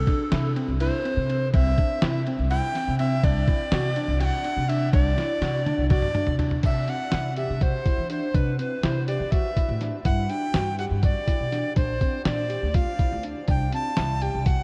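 A dreamy, cassette-toned mix soaked in a huge ambient reverb frames this short cut from a longer progressive instrumental piece, bright and intricate in a straight 7/8 at 246 BPM counted in eighths, in C lydian. A reedy tenor recorder carries the melody from A4 to A5, airy and chiffy with tongued notes and vibrato, trailed by an analog delay. Beneath it a woody pizzicato upright bass with steel strings holds the low end, while a worn, slightly out-of-tune tine electric piano plays arpeggios, lightly overdriven through a combo amp with a subtle chorus. A lo-fi sampler-style kit, compressed, pitched down and muffled, supplies a thumpy kick, fat snare, hi-hat, ride, crash and toms, and sits forward in the balance. A drum fill from 5.2 to 6.6 seconds leads into a new section where the harmony moves from C through Gmaj7(no3) and Bbadd9 before settling back on C.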